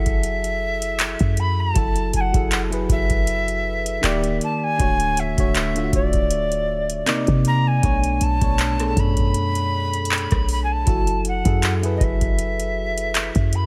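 An airy, mellow alto recorder with a tongued chiff and vibrato carries the melody through a digital delay over a booming, overdriven analog drum machine with deep kick, metallic hats, handclaps and rim clicks entering at 0.1 s, a glassy, bell-like FM electric piano warbling through chorus on chords from F#m9 through Dmaj7 and Bm9, and a dark, sine-toned 808-style bass, all in a dry, late-night, sensual contemporary R&B groove at 79 BPM in F# minor with a light 16th-note swing.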